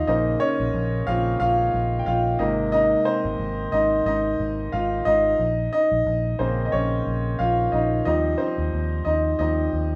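Hopeful and warm, this brief piano-driven pop passage moves at 90 BPM in 4/4 with a light sixteenth-note swing, cut from a longer piece. A clear upright piano carries the accompaniment and takes a solo across the whole 10 seconds, its woody, smooth tone sitting up front with long sustain and a vintage character. From 0.1 seconds a muted fingered electric bass joins underneath, dark, round and punchy, with a foam-muted, amped sound kept lower in the mix. The harmony cycles through Bbmadd9, Abadd9 and back to Bbmadd9 before settling on Eb6 at 8.1 seconds. Moderate studio reverb gives the feel of a band playing live together in one room.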